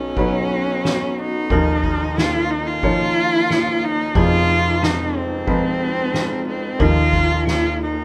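A dark, bowed cello carries the melody up front, played expressively by one player with vibrato and portamento in a close, intimate sound. This short excerpt is an acoustic folk-pop ballad in Eb minor at 90 BPM in a straight 4/4, with a reflective mood, cut from a longer piece. Beneath the cello, a felt-muted upright piano gives mellow, soft accompaniment, while a hollow-body short-scale electric bass, fingered and amped, adds a round, dark low end. In the background, a vibraphone struck with hard mallets rings out bright, metallic arpeggios with a fast motor vibrato. A soft-mallet drum kit enters at 0.2 seconds with kick, snare and ride, sounding distant and roomy with a boomy kick and a rolled-off top. Light reverb surrounds the ensemble as the harmony moves through Badd9, Ebsus2 and Fm7.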